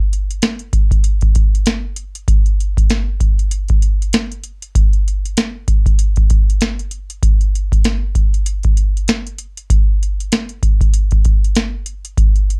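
Confident and soulful, this hip hop excerpt rides a swung 4/4 groove carried entirely by a booming analog drum machine. Its deep kick, tonal snare and metallic hi-hats sit up front in a dry, close sound, with the beat starting at 0.1 seconds and running to 12.6 seconds.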